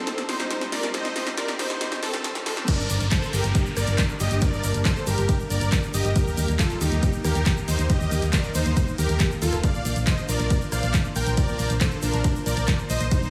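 A straight 4/4 pulse carries this soaring, driving uplifting trance excerpt, which opens with a brief build-up and drum fill from a punchy analog drum machine, very quiet electronic risers and swells, and a thick, detuned pad with chorus and phaser sitting bright in the background. Huge, full-bodied supersaw chords carry the melody throughout, with digital delay, plus sidechain pumping that the pad shares. At 2.7 s the drop arrives as an up-front electronic kick, a dark, round FM bass with tube saturation and a grainy, distant egg shaker join in, while the drum machine's snare, handclaps, hi-hats, rim clicks and cymbals keep the momentum going.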